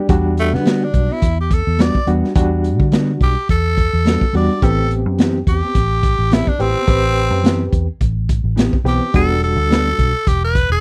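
Brooding and mournful, this short excerpt of straight-eighth soul blues in E minor moves at 106 BPM with a light swing, its growling, raspy tenor saxophone soloing up front over chords that shift from Em9 to Am9 at 4.6 seconds and back to Em9 at 9.1 seconds. Beneath it, an overdriven, barky reed electric piano pulses with fast tremolo through a combo amp, a round, foam-muted vintage electric bass holds the low end, and a crunchy breakbeat kit with a punchy kick, medium-tuned snare and hi-hat sounds saturated and rolled-off. A mellow, clean electric guitar adds fingered stabs in the background, all captured in a dry, close 1970s-style studio sound.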